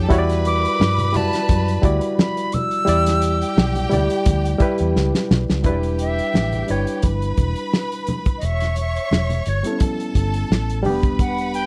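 A relaxed 87 BPM groove with a gentle 16th-note swing drives this lush, cinematic 1970s-style soul excerpt in E dorian, where a tight, fat-snared drum kit and very quiet, ringing congas sit under a dark, round muted electric bass, a barky, lightly overdriven electric piano up front, and a clear, bowed violin section beneath an airy silver flute melody that turns into a solo at 5.6 seconds after a drum fill, all in a small room.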